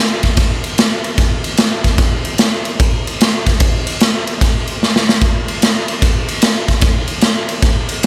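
A gritty, saturated drum sound sits up front in a bright stone room, with light reverb and a pumping room character that gives the recording a raw, lived-in feel. This short excerpt from a longer blues piece carries a rollicking, soulful mood, driven by a swung 4/4 groove. The acoustic garage drum kit is the only part, entering at 0.2 seconds and playing kick drum, ride cymbal and snare drum. Its punchy kick and medium-tuned snare come through with a rolled-off top end, keeping the tone warm. A drum fill from 4.8 to 5.2 seconds marks the turn into a repeat of the opening section, and the kit plays on until the cut at 8.1 seconds.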